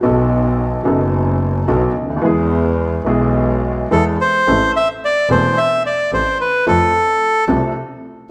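Tense and melancholic, this short excerpt of a tango moves at 109 BPM in 4/4 with a rubato feel, settling into A minor from 4.5 seconds. A dark, woody upright piano, mellow and slightly detuned, carries the accompaniment from the start, ranging from E1 to A4. Beside it, a single bowed double bass gives a clear, earthy bass line low in the register. At 3.9 seconds a reedy, airy bandoneon enters with the melody between A4 and E5, sitting a little louder than the other parts. The harmony passes from B7 to E before turning to A minor and F, and all three instruments are up front within the reverb of a recital hall.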